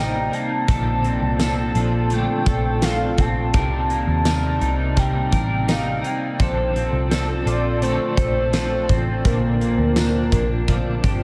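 Dream pop at 84 BPM in Bb major, dreamy and floating, where a velvety, detuned synth lead with chorus and tape echo carries the melody over a warbling, nostalgic tape-like pad, a clean electric guitar with tremolo in the background, a slightly broken-up, twangy electric guitar playing arpeggios through lush chorus and echo, a dark, foam-muted picked bass up front, and a huge arena drum kit with a fat snare, punchy kick, hi-hat and tambourine entering at 0.3 seconds, all soaked in cathedral reverb as the chords move between Cm7 and Bbmaj9 before settling on Bbmaj7.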